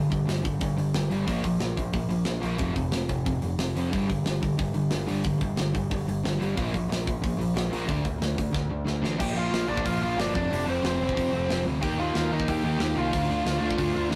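A biting, overdriven lead guitar cuts in up front at 9.2 s, carrying the melody high over this raw, aggressive punk rock excerpt in G minor at 182 BPM. Beneath it, an overdriven semi-hollow guitar drives the riff from the first second, joined by a sludgy distorted guitar sitting very quiet in the mix, while a growling picked bass with overdrive anchors the low end. A tight metal drum kit with bright cymbals, a medium-tuned snare and a tight kick pushes the straight 4/4 feel, and a drum fill at 8.5 s leads into the second section. Late in the clip, at 11.8 s, a thick, double-tracked fuzz guitar joins faintly, adding grit as the chords move through Eb to Dm. Moderate reverb and a rough rehearsal-room sound give the whole thing a live, unpolished edge.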